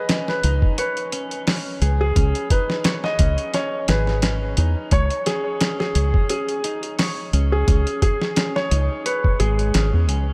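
Cinematic and hypnotic, this trip hop excerpt moves at 87 BPM in 4/4 with a 16th-note swing, resting on a single C#7sus2 chord. A felt-muted upright piano carries the melody between G#4 and D#5, its soft, mellow, intimate tone sitting up front and trailed by tape echo. A clean electric guitar plays bright, twangy picked arpeggios from G#3 to C#5, set lower in the mix with subtle chorus and tape echo. A dusty soul sampler-style kit of hi-hat, thumpy kick and medium-tuned snare enters at 0.1 seconds with a gritty, compressed character, and a deep dub fingered bass joins at 0.4 seconds, dark and round with tube saturation, spanning G#1 to E2. The whole excerpt is soaked in a moderate cathedral reverb with a 6.1-second decay, giving the mix a dreamy, suspended atmosphere.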